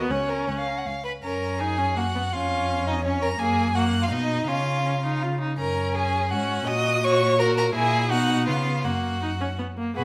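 An up-front, warm cello with expressive vibrato and portamento anchors the bass of this spirited, cheerful classical-period string quartet movement in F# major, moving quickly at 165 BPM in 3/4, as a close, clear viola supplies the accompaniment, one rich, focused violin carries the melody and a second, soft-edged violin with portamento sings an expressive second line, all four bowed in a moderate recital-hall reverb.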